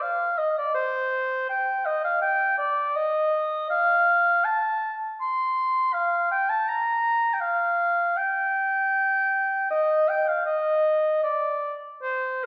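A classical, baroque-style fantasia for solo oboe in Eb major unfolds at a rubato 80 BPM in 4/4, tuned slightly low to A4 = 437 Hz, with a serene yet dance-like character. The oboe plays alone throughout the 12.5 seconds, moving between C5 and C6 with a warm, soft-attacked tone that sits up front yet sounds roomy. A wet recital-hall reverb with a 1.6-second decay gives the church or concert-hall recording its spacious glow, in a short passage cut from a longer piece.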